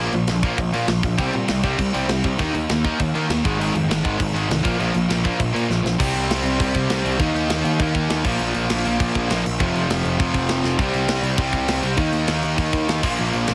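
A cranked stack guitar and a distorted electric guitar open with bright, overdriven picked riffs over a growly, fuzz-laden picked bass, joined at 0.1 seconds by an up-front, tight metal drum kit with bright cymbals, then at 1.2 seconds by a double-tracked crunchy guitar, driving this angry, urgent C minor punk rock cut at 200 BPM through power chords on Bb, C, Eb, Ab and F, with a drum fill at 5.7 seconds ushering in a new section, all wrapped in light reverb and a heavily compressed, radio-like sound.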